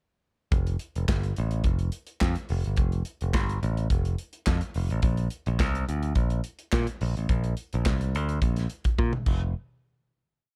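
A bright, picked electric bass and a polished, airy studio drum kit start together at 0.5 seconds in this glamorous, joyful short disco piece, the up-front bass playing a syncopated line over a four-on-the-floor kick with sixteenth-note hi-hats, a medium-tuned snare layered with handclaps, crash cymbal and toms, before a drum fill at 9.0 seconds leads into a final hit at 9.5 seconds, all in a dry, dark production.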